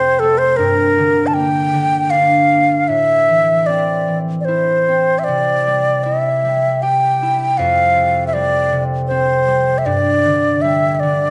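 A wooden flute carries the melody up front, its airy, woody tone shaded with vibrato and a crisp attack on each note. This is a Celtic slow air in folk style, haunting and full of longing, moving in a relaxed, rubato three-beat lilt. A concert harp sits up front as well, fingerpicked and ringing, giving a warm acoustic bed of chords that drift from F through G minor and A minor to Cadd9, Fsus2 and a closing G5. Both instruments play together from the first moment to the end at 11.3 seconds, a short passage lifted from a longer piece. A moderate recital hall reverb lends the pair a natural sense of space, and the top end stays gently rounded.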